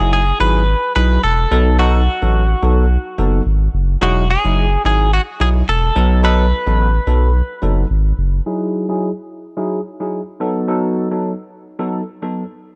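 A twangy, compressed clean electric guitar with subtle chorus picks a breezy, sunny melody in this 108 BPM afrobeats excerpt in E major with a light 16th-note swing, riding Emaj9 and B7 changes over a deep, thick saturated sub bass and a bell-like, bright tine electric piano with lush chorus, all close and dry with gritty cassette-tape character, until the guitar stops at 7.9 s and the bass at 8.4 s, leaving the electric piano alone under a filter sweep from 8.5 s.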